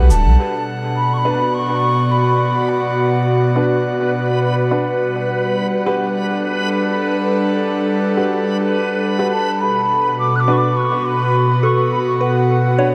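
The sound is drenched in a lush concert-hall reverb, giving this meditative, hazy ambient passage, cut from a longer piece, a soft and distant glow. An airy, detuned pad with chorus sits up front, holding bright sustained chords that slowly bloom and linger, while a reversed, granular texture swells alongside with its own dreamy shimmer. A woody upright piano drifts in the background with stabs trailing off in dub echo. A breathy, mellow wooden flute carries the unsteady, tongued melody with vibrato, falling silent at 3.6 seconds and returning at 9.3 seconds. The harmony moves from B minor to G major seventh and back, and at 11.6 seconds a pure FM synth bell enters with gentle, decaying arpeggios coloured by chorus, phaser and echo.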